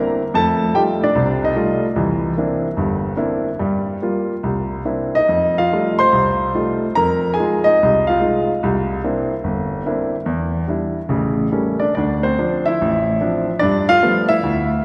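Solo jazz in a relaxed mood at 145 BPM in 4/4, this 14.8-second excerpt from a longer piece features a clear, natural baby grand piano placed up front with short sustain, spanning G1 to C6 in C mixolydian with swung eighths and rubato phrasing, moving through F9, C9, Gm7, Fm7, Em7, A7b9, Dm7 and G9 inside a church's wet 2.7-second reverb.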